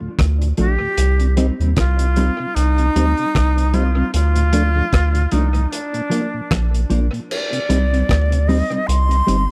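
A dry, close 1970s-style studio sound in a small room frames this serious, meditative roots reggae passage, cut from a longer piece and carried on a swung sixteenth-note feel. A bright, airy silver concert flute with unsteady vibrato sings the melody through tape echo, over a round, up-front dub sub bass, a muffled, gritty cloth-damped drum kit of crash, hi-hat, tight kick and rim click, and a dark, compressed electric guitar that enters at 0.6 seconds. Further back, a mellow tonewheel organ with key click turns through a slow rotary speaker as the chords move between D minor, C minor and B-flat.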